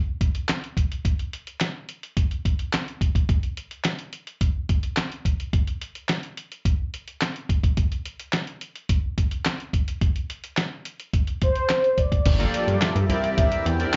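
Heard as a live gig through the venue's PA, with club ambience, light reverb and a dull, capped top end, this funky, danceable early-eighties boogie funk excerpt opens on a compressed, lo-fi sampler-style drum kit with a thumpy kick, medium-tuned snare, hi-hat, handclaps and crash. A round, horn-like synth lead with chorus, vibrato and slapback echo joins at 11.4 seconds. At 12.3 seconds the harmony arrives on Gm9 moving to C9: a fat, sawtooth analog bass with a filter sweep, a glossy, detuned chorused polysynth, and a swirling phased string machine sitting in the background.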